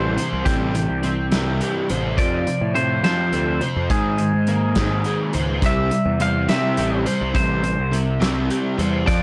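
A dark, lightly reverberant small-room sound frames this carefree, jangly indie rock excerpt in a lilting 6/8, moving through C, F, Abadd9 and back to C. A clean, compressed, twangy electric guitar carries the melody through tape echo, while a crunchy overdriven guitar and a hollow-bodied semi-hollow guitar, thickened with ensemble chorus and tape echo, play riffs beneath it. A growly, fuzz-soaked picked bass sits up front, and a loose acoustic drum kit with a punchy kick, medium-tuned snare and hi-hat joins at 0.2 seconds.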